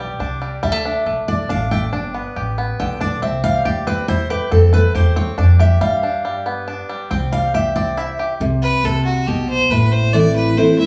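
Virtuosic, driving bluegrass in 3/4 at 139 BPM in C major, this cut from a longer piece opens with a dark, full-bodied jumbo acoustic guitar soloing up front on old strings, while a mellow, twangy banjo played with fingerpicks carries the melody and a thumpy, woody upright bass plucks the low end. At 8.4 seconds the banjo drops out, and at 8.6 seconds a single clear, biting fiddle takes over the solo with light vibrato and a smooth top. The band sounds like it is playing live in one room, with small-room ambience and a moderate large-studio reverb.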